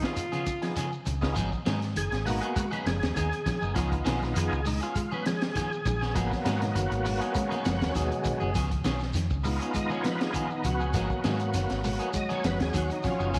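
Driving and defiant, this afrobeat cut from a longer piece moves at 100 BPM in a straight 4/4, set in G# dorian and alternating between C#7 and G#m7 chords. A distant, roomy alto saxophone with light vibrato and scooped notes opens with a brief melodic entry that ends by 0.9 seconds. From 1.4 seconds the overdriven tonewheel organ, thick, gritty and up front with key click, percussive attack, chorus vibrato and a slow rotary speaker, takes a solo through the rest of the passage. Beneath it, a dark, clean electric guitar plays fingered arpeggios in the background, while a bright, twangy guitar at the edge of break-up adds picked stabs. A crunchy breakbeat kit with a high-tuned snare and tight kick sounds saturated and rolled-off on top, joined by a grainy shekere and very quiet, damped, low-tuned congas played with soft hands. A foam-muted fingered electric bass, round and amped, enters at 1.1 seconds, and the whole band sits in a moderate echo chamber reverb.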